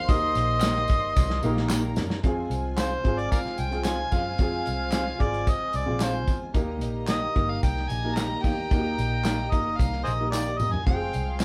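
Joyful and warm, this uptempo 1960s-style soul cut has a straight feel and the sound of a band playing live together in a small, reverberant room. Up front, an amplified, overdriven harmonica carries the melody with a gritty, jazz-style solo voice, light vibrato, scooped notes and tongue slaps. Beneath it, a studio string section plays a soft-attacked, floating second line sul tasto, while a very quiet, lightly overdriven tonewheel organ holds percussive sustained chords through a slow rotary speaker. A dark, round, foam-muted electric bass with tube saturation anchors the low end, a woody, boxy upright piano adds short-sustained accompaniment, and a bright, twangy guitar through a small old amp slips in at 0.6 s with slightly broken-up stabs in the background. The small-room drum kit sounds smooth, with a tight kick and rolled-off top, and throws in fills at 1.2 s and 10.3 s, while close maracas and group handclaps fill out the percussion as the harmony moves between Eb and Fm.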